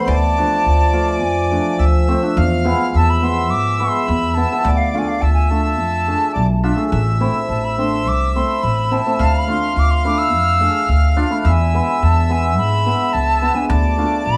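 Klezmer in a straight 4/4 at 106 BPM, this short cut from a longer piece feels both soulful and festive. A hollow, airy concert flute carries the melody high in its register, its crisp attack and vibrato caught close to the microphone. Beneath it, a reedy, full accordion plays a second line. A mellow, shimmering cimbalom rings out its hammered accompaniment up front until 14.1 seconds, while a dark, woody upright bass, plucked pizzicato on gut strings, sits thumpy and prominent as the loudest part. The harmony moves through Dm, E and Am before settling back on Dm, all within a moderate studio reverb and the ambience of a small room.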